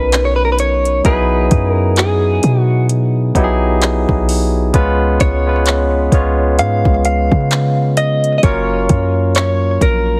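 Contemporary R&B at a slow 65 BPM with a swung sixteenth-note feel, this romantic, tender excerpt moves through Bmaj9, Emaj9/B, C#7 and F#maj7. A clean, direct-recorded electric guitar carries the melody, picked and compressed under lush chorus and delay, while a bright, barky tine electric piano supplies the accompaniment. Beneath them a deep, boomy 808-style bass with a sine core and a noise layer sits up front beside an electronic drum kit of soft kick, metallic hi-hat and handclaps, roughened by overdrive, all inside a digital ambience and a heavily compressed, radio-like sound.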